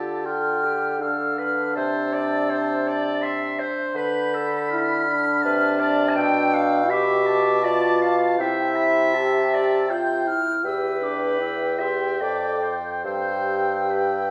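In a flexible triple metre taken with rubato at roughly 70 to 84 BPM, this slow romantic movement for wind quintet unfolds with a lyrical, serene calm. The concert flute carries the melody high in its register, its airy, straight tone and crisp attack sounding somewhat distant yet expressive, while the clear oboe shapes a second line just beneath it with a light vibrato. A mellow clarinet and a smooth-topped French horn fill in the accompaniment, and the bassoon anchors the bass with a gentle vibrato and a roomy presence. The harmony drifts from D minor through a half-diminished colour before settling into C major at 6.2 seconds, then moves on through E minor toward a closing G chord. All five players sound together throughout this fragment of a longer piece, heard in a resonant recital hall whose reverb lends a spacious, church-like bloom.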